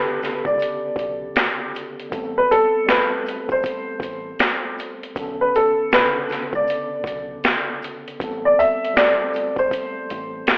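A swung boom bap groove at 79 BPM anchors this hazy, nostalgic lo-fi hip hop clip in B phrygian, its up-front sampler-style kit gritty and pitched down, with a thumpy kick and high-tuned snare, entering at 0.2 seconds together with a grainy, very quiet tube shaker, while a dark, round dub bass sits in the background from 0.5 seconds. Over a mellow tine electric piano with a cassette-tape tint, a worn, woody, slightly detuned upright piano carries the melody up front as the chords move between Bm9 and Am9. Light reverb and a dry, telephone-like hardware grit colour the whole.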